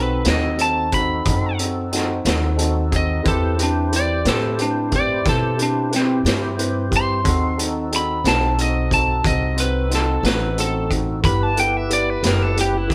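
Slow blues in a smoky, soulful 12/8 with a straight feel, cut from a longer piece, and the lead electric guitar takes a solo across its full 12.9 seconds. The guitar sits up front with a bright, twangy, slightly broken-up tone, picked and compressed, carrying the melody over a progression that moves from B7b9 to Cmaj7, back to B7b9 and settles on Em. Beneath it, a dark upright piano adds mellow, long-sustaining accompaniment, while a fat tonewheel organ holds chords in the background, lightly overdriven with chorus vibrato, key click and a slow rotary speaker. The pizzicato upright bass is woody and growly, and a vintage acoustic drum kit joins at 0.2 seconds with hi-hat, a tight kick and a medium-tuned snare, its sound saturated and gritty with a rolled-off top. Light reverb gives the impression of a band playing live together in one room.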